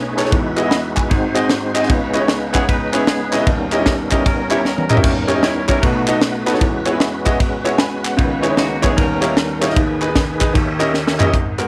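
A swinging 152 BPM pulse in 4/4 drives this solemn yet fervent uptempo gospel excerpt, where a crisp, punchy drum kit with a high-tuned snare and close, dry group handclaps carry the beat under a woody upright piano, a lightly overdriven tonewheel organ holding sustained chords through slow rotary speaker and chorus vibrato, and a twangy clean electric guitar with harmonic tremolo playing a second line from 2.5 to 9.6 seconds, with drum fills at 4.6 and 10.9 seconds and a piano fill at 7.6 seconds over a chord progression that moves from Emaj9 through C#m9 to D#7b9, all in a small, lightly reverberant room.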